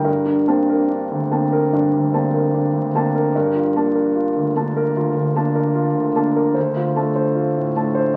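Rubato in a loose 4/4, this brief, wistful and mysterious fragment of impressionist classical solo piano sets an intimate, up-front concert grand, with audible action noise and deep bass, drifting through Bbmaj9, Gm9 and Dm7 inside a wet recital-hall reverb, all heard through the crackle of a very old 78 rpm record.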